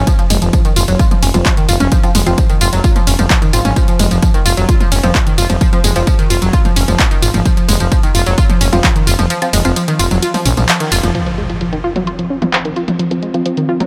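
Driving peak-time techno at 130 BPM in a straight 4/4, this dark, intense cut from a longer piece sits in F phrygian, opening on a drop where a heavy, layered electronic kick sits up front beside a punchy, tape-warm analog drum machine of handclaps, hi-hat, ride cymbal, tambourine and toms, its filtered percussion pumping under the sidechain. A growling, thick FM bass holds the low end up front, pumping too, while a bright, detuned analog pluck drives the riff with ring modulation, chorus, overdrive and digital delay. From 1.3 seconds a muted, deep dub chord stab hovers in the background, colored by phaser and delay. The kick drops out at 9.3 seconds, a band accent lands at 10.7, and at 11.1 seconds an electronic impact hits as the bass stops and a filter sweep runs on a synth arpeggio sound. An evolving analog drone with a slow attack, pulse-width modulation and chorus enters in the background at 12 seconds for the closing stretch, all inside a digital ambience.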